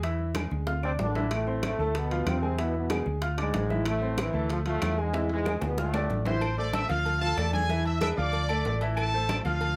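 Salsa, driving and danceable, cut from a longer piece, with a round, punchy hollow-body electric bass up front beneath a clear, intimate baby grand piano whose action noise is audible. A tight, bright trombone section with light vibrato carries the melody from 0.8 s, and a present trumpet section with vibrato takes it over at 6.3 s as the second section begins. Behind them, ringing congas, dry high-tuned bongos and cowbell, metal-shell timbales with agogo bells, and distant woody claves sit in a moderate studio ambience.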